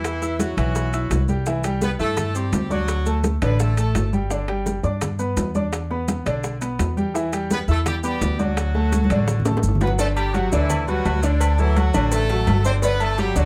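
Salsa at 169 BPM in G major, joyful and danceable, where a growly, woody upright bass and a brilliant grand piano sit up front, a distant, punchy horn section with octave doubling and plate reverb states the melody from 0.0 to 4.1 seconds and returns at 7.5, and ringing timbales with agogo bells, tight high-tuned bongos with cowbell, soft-handed congas and grainy maracas drive the groove, with a drum fill at 8.9 seconds leading into a new section at 10.0.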